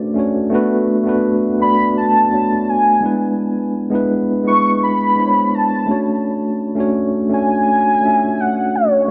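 A velvety, detuned synth lead carries the melody with chorus, tape echo and vibrato, sounding together from the start with a mellow, clean tine electric piano heard through its built-in speakers, both up front in this sensual, late-night R&B fragment at 84 BPM that moves from Dmaj7 through Bm7 and E7 back to Dmaj7 under a lush hall reverb and a dark, warm production.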